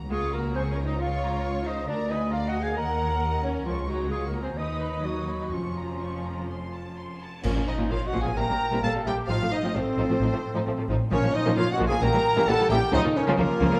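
Classical, dramatic and urgent, this rubato romantic orchestral passage opens with a lush, vibrato-rich violin melody over bowed cellos, double basses with expressive portamento, smooth violas, a second violin line and a dark, distant clarinet, while a cymbal swell, clash cymbals and concert bass drum surge in at 3.7 seconds, and from 7.4 seconds an airy silver flute, mellow French horn chords, clear trumpet stabs and very quiet timpani join a full-band accent, all set in a moderate concert hall reverb with a dark, warm production.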